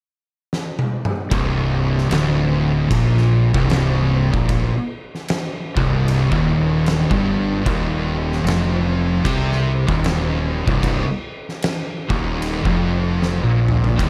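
Ominous and heavy, this stoner and doom metal excerpt crawls along at 76 BPM in 4/4 with a swung feel, set in C minor. An oversized, low-tuned drum kit opens with a fill at 0.5 seconds, its punchy kick, fat snare, toms and crash sounding dark, saturated and gritty, placed up front in a bright stone room. At 1.3 seconds the riff arrives on a C minor chord, carried by two thick fuzz guitars, one dark and set in the background, the other warm and distorted, with a very quiet, double-tracked crunchy guitar adding a bright overdriven edge. Beneath them a fingered bass with growly overdrive and fuzz sits up front, anchoring the low end. The harmony moves to an Eb5 at 7.7 seconds, and another drum fill closes the passage at 13.2 seconds, all in a dry sound with little reverb.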